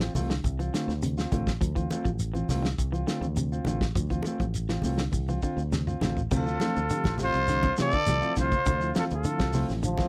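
A growling, raspy trumpet takes the melody at 6.4 seconds in this hypnotic, defiant afrobeat excerpt, shadowed by a distant second trumpet over a fat-snared soul drum kit, a round and punchy fingered bass, low-tuned congas, grainy shekere, arpeggiated semi-hollow guitar, dark guitar stabs and a very quiet reedy tremolo electric piano, with a drum fill leading into the horns and a clear trombone section arriving at 9.8 seconds, all in a dry, close 1970s-style studio sound.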